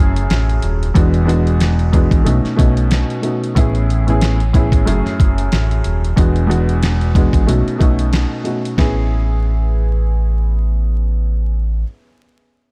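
Soulful and warm, this boom-bap hip-hop excerpt at 92 BPM sets a dark, slightly detuned upright piano, woody and worn with audible action noise, over a round, punchy dub bass through a cycle of F#m9, E9, B9 and Amaj9 chords, while gritty sampler-style drums with a thumpy kick and fat snare swing from 0.2 s until they stop at 9.0 s, leaving piano, bass and vinyl crackle to carry the close.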